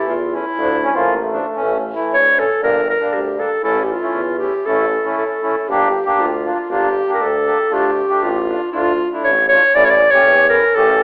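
A dark, soft-attacked clarinet carries the soulful, festive melody up front in this klezmer excerpt at 118 BPM in A phrygian dominant, over a reedy, close-miked accordion and a tuba bass with light vibrato, while a mellow trombone with vibrato adds a brief second line from 0.8 to 2.0 seconds, a break falls at 5.2 seconds, and the whole sits in a wet recital-hall reverb with a telephone-like sound.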